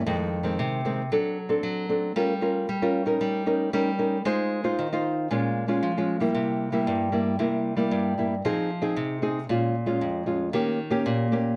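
Nostalgic yet lively, this short excerpt is a solo samba for nylon-string guitar in F minor, moving at 115 BPM in a straight 4/4 feel. The guitar plays alone from start to finish, about 11.6 seconds, cut from a longer piece, and its range reaches from F2 up to C5. Its tone is acoustic, dark and small, thumb-plucked and placed up front, with a slapback echo. The harmony opens on Fm7 and passes through D7/F#, Gm7b5, Eb7/G, Ab6 and Bbm7 before reaching C7 and returning to Fm7, closing on Bbm7 and Eb7. Close, detailed microphones and a light reverb give the recording a close, detailed sound.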